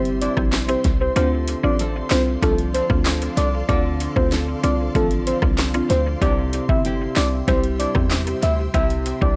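Dancehall at 95 BPM in D minor, tough and sultry, this short cut from a longer piece sets a punchy, tight 808-style bass and an up-front electronic drum kit with a deep kick, sharp snare, metallic hats, handclaps and rim clicks under a soft, dark octave-layered synth lead carrying the melody with vibrato, chorus and dub echo. A woody, round mallet-like pluck and a fingerpicked nylon-string guitar with audible finger squeak fill out the accompaniment, while an ethereal, airy pad with tremolo and sidechain pumping sits in the background over chords moving from C to Dm7 and back to C at 6.2 seconds. The mix is dry and echo-heavy, and the kick drops out between 1.2 and 2.4 seconds.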